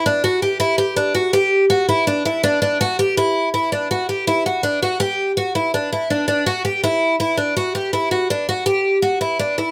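Progressive instrumental music in 5/4 at 164 BPM, this short excerpt from a longer piece carries a tense, driving mood with a straight feel. A picked twelve-string acoustic guitar plays alone for the whole 9.7 seconds, staying within a narrow span from D4 to G4. Its tone is bright and shimmering, with the octave-doubled strings adding sparkle, and it sits up front in the mix. The guitar rings in an auditorium-like space with light reverb. The passage moves from an opening section into a second one at 3.2 seconds, keeping the urgent, restless energy throughout.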